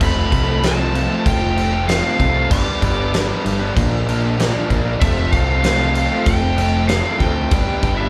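Classic rock at 96 BPM in a straight 4/4, swaggering and confident, this short live excerpt moves through F, G and B-flat chords as a dark, smooth overdriven lead guitar carries the melody with slapback echo over two background rhythm guitars, one crunchy and the other bright with spring reverb, both playing riffs. A growling, round overdriven picked bass joins a huge arena drum kit that sits up front with a fat snare, boomy kick and crashes, while a very quiet vintage string machine set to cellos holds mellow, phased sustained chords beneath. The whole performance comes through a venue PA with light club reverb.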